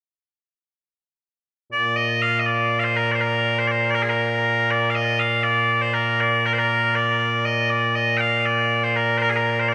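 Ceremonial and proud, this Scottish pipe music in Bb major moves at 80 BPM in a straight 6/8, cut from a longer piece. A loud, piercing solo bagpipe sits up front from 1.7 to 9.7 seconds, its continuous tone spanning Bb2 to G5. A wet cathedral reverb with a 5.6-second decay places the pipes in a vast, echoing space.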